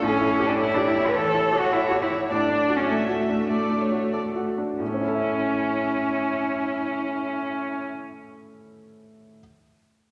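Lively and spirited, this brief excerpt from a quick classical-period piano trio movement in A major moves at a flexible, rubato 89-108 BPM in 4/4, slowing down over its first 4.8 seconds, as a warm violin sings the melody with vibrato and portamento over a rich, even cello second line, while a bright, brilliant concert grand piano with deep bass accompanies and rings on alone until 9.4 seconds in the wet reverb of a scoring stage.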